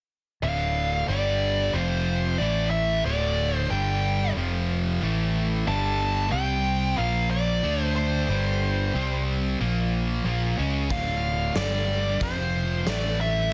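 Hard rock at 92 BPM in D minor, menacing and driving, this excerpt sets a dark, nasal lead guitar with a parked wah, overdrive and slapback echo up front, carrying the melody over a round, punchy fingered bass that also sits forward. Two riffing guitars fill out the low and middle range, one an overdriven semi-hollow body tucked in the background and the other tight, bright and distorted, moving through power chords such as G5, F5 and A5 before a brief Bbm7 turn. A huge arena drum kit with a punchy kick and medium-tuned snare in a big natural room joins only at 10.9 seconds and drops out at 13.0 seconds, all within a dense, heavily limited modern master with light reverb.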